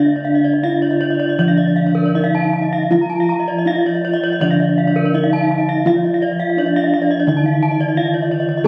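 Gamelan in a hypnotic, brilliant mood, heard as a short cut from a longer piece, where a mellow, soft bronze metallophone carries the melody over a close, dry metallophone accompaniment and round, beating bossed gongs in the bass, while two horn-mallet metallophones, one bright and airy and the other boxy, spin arpeggios with shimmering beats from their paired tuning, all caught on a phone in a reverberant hall with added club reverb and compression.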